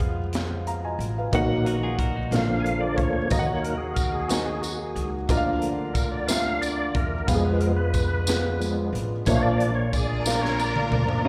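A dark, slightly detuned upright piano with audible action noise opens this slow, solemn gospel passage in 6/8 together with a woody pizzicato upright bass, crisp fusion drums with a high-tuned snare and tight kick, and very quiet, clear French horn chords. At 1.3 seconds a bright, reedy tonewheel organ enters up front with key click, slow rotary speaker and chorus vibrato, carrying a fervent solo over chords that move from Ebm to Bb, while a clean, picked electric guitar adds a brief line, and at 3.3 seconds a distant, jingly tambourine joins. Near the close, a lush bowed string section arrives at 9.9 seconds with a melody touched by slapback echo, and a drum fill follows at 10.3 seconds, all heard through a venue's PA with moderate club reverb.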